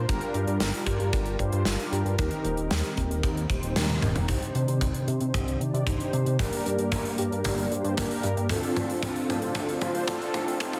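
Dark, round synth brass stabs sit up front in this nostalgic, cinematic synthwave excerpt over a glossy chorused synth bass with sidechain pumping, a punchy kick and a gated 80s kit of hi-hat, snare and toms in a bright stone room, and after a drum fill and band accent at 3.8 seconds a bold, detuned analog pad enters in the background at 4.3 seconds under a filter sweep, set in a moderate concert hall reverb.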